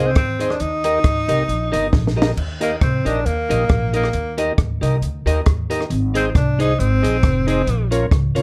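Bouncy and joyful, this ska passage moves at 136 BPM in 4/4 with a light swing on the eighth notes, set in E-flat major and taken from a longer piece. A breathy tenor saxophone carries the melody up front, its whispered, intimate tone marked by soft attacks, scooped notes and vibrato, placed in a slapback echo and plate reverb until it stops at 7.9 seconds. Beneath it, a clean electric guitar picks out the accompaniment while a tonewheel organ adds stabs with audible key click through a slow rotary speaker, both sitting in plate reverb. An upright bass plays pizzicato with a woody, steel-strung sound close to the listener. A compact cocktail drum kit comes in at 0.2 seconds with a high-tuned snare, tight kick, rim click, hi-hat and crash, its small-room sound smooth with a rolled-off top, and a drum fill from 1.9 to 2.4 seconds leads into the repeat of the opening section. The overall production is dark and lightly reverberant, moving through A-flat, E-flat and B-flat minor harmonies.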